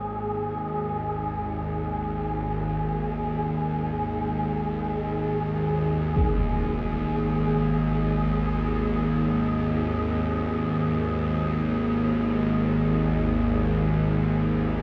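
A tense, string-like bowed drone sits up front with vibrato-tinged sustain and fades in across the whole 14.8-second fragment of this cavernous, unsettling dark ambient piece in free time, joined by a breathy, wind-like tuned noise texture shimmering high above and a huge, bright impact buried in the background at 6.2 seconds, all within a dark cathedral-like reverb.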